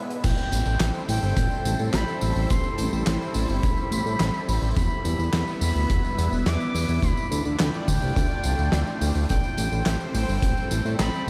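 Synthwave with a nostalgic, nocturnal mood, heard in a short passage cut from a longer piece and drenched in cathedral-like reverb that gives the whole mix a dreamy, floating quality. A lush unison pad of detuned sawtooth and square waves with a sub octave holds sustained chords from the start, its bright sheen shaped by chorus, phaser and a sidechain pumping. An oversized, low-tuned acoustic drum kit with dark cymbals, a fat snare, handclaps, hi-hat and tambourine sits in a bright stone room alongside a punchy, gritty kick with a rolled-off top. Up front, a fat, detuned sawtooth bass carries the low end with saturated weight. Above it all, an expressive portamento lead sings in a high register, its smooth sawtooth tone colored by vibrato, chorus and a diffuse ambient delay, as the harmony moves from Am7 through Em and Dmadd9 before returning to Am7 at 9.3 seconds.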